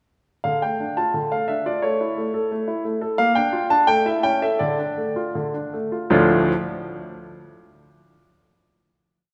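In a rubato 2/4, this short, complete classical-period piano sonatina feels dramatic and restless, with a clear, polished baby grand placed up front playing a single-line melody over a broken-chord bass, slowing from 2.5 to 6.1 seconds before a final chord rings into the wet reverb of a concert hall.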